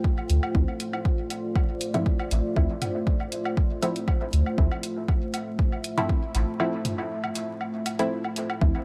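A muted, detuned chord stab runs through a filter sweep across this cavernous, hypnotic dub techno excerpt, its chorus, phaser and dub echo all pumping against the punchy, up-front kick drum. A soft, round sub bass and a dark, full-bodied analog pad sit under a tape-warm hi-hat and overdriven electronic woodblock and toms that also carry dub echo, with the 16ths played at a light swing over a Dm7 chord. Vinyl crackle and little reverb frame the mix, and the kick drops out from 6.6 to 8.6 seconds.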